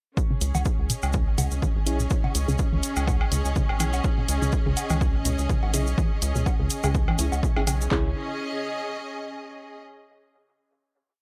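Hypnotic and quirky, this short minimal techno piece rides a punchy, tape-warm analog drum machine with four-on-the-floor kick and clap, programmed closed hats, a grainy hand-played tube shaker, cowbell and woodblock clicking in cross rhythm through dub echo, a rubbery, hollow square bass rolling in staccato under sidechain pumping, a juicy, squelchy blip pluck cycling a 9-step loop that drifts against the bar with chorus and delay in the background, sparse crisp wavetable chord stabs entering at 1.9 seconds with cassette grit and dub echo, and a lush bowed string section of slowly shifting chords that holds a final chord from 7.9 to 9.8 seconds.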